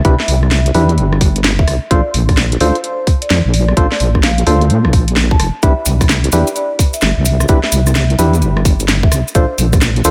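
Sunny and soulful, this excerpt from a longer two-step garage track moves at 129 BPM in 4/4 with a shuffled 16th-note swing, set in C major and tuned slightly below standard pitch. A tight, up-front electronic kick anchors the groove alongside a garage kit of cracking snare, rim clicks and warm hi-hats, both given a small-room character. A deep, wobbling sawtooth-and-sine bass sits prominently beneath, dark and compressed with chorus and a pumping sidechain. Hollow, organ-like stabs with a fast, noisy percussive attack then decay, coloured by chorus, cassette-tape grit and tape echo, while a mellow vibraphone struck with soft mallets rings in the background from 0.2 seconds, its slow motor vibrato trailed by delay. Grainy, saturated maracas join at 5.6 seconds as the harmony shifts between Cmaj7 and Bbmaj9 under a light reverb.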